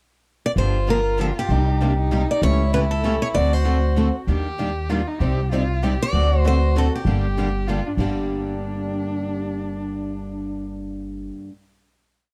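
Acoustic string swing in a bittersweet, fiery G minor waltz at 194 BPM, where a bright, boxy picked steel-string guitar states a motif-based melody of call phrases until 7.7 seconds over a close, expressive bowed violin counter-melody with vibrato and portamento, a bright rhythm guitar striking every beat with short, accented chords on two and three, a second rhythm guitar with finger squeak sitting in the background, and a woody, thumpy pizzicato upright bass playing root and fifth, all in a dark production with light reverb that closes on a final G minor chord.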